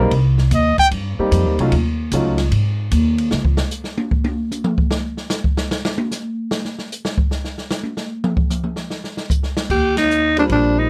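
Small-group swing and bop jazz with a relaxed, playful mood, cut from a longer piece and recorded close with little reverb. Warm grand piano accompaniment and woody upright bass open the swinging 4/4 alongside a brief, clear trumpet phrase with light vibrato, before the open drum kit, with its dark cymbals, boomy kick and medium-tuned snare, takes a solo from 3.3 seconds. At 9.7 seconds a growling alto saxophone enters with a raspy subtone melody and scooped notes, the bass returns, and the band hits an accent at 9.9 seconds.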